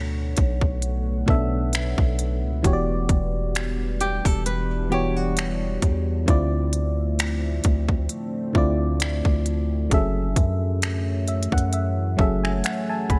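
Late-night and full of longing, this contemporary R&B excerpt moves with a lightly swung 16th-note feel over minor ninth chords: Bm9, Em9, Dm9 and F#m9. A mellow FM electric piano with a noise layer carries the accompaniment up front, joined by a long, deep sine 808-style bass with a fast attack and a decaying tail. A trap drum kit enters almost at once with a hard-clipped kick, crisp hi-hats and finger snaps, while a moody, detuned sawtooth pad sits in the background, warbling through chorus and built-in reverb and pumping from sidechain compression. Between 4.0 and 6.2 seconds a bright, fingerpicked flamenco guitar adds acoustic arpeggios with audible finger squeak and tape echo. The electric piano plays a fill from 10.8 seconds, and the dry, close mix keeps the piece intimate.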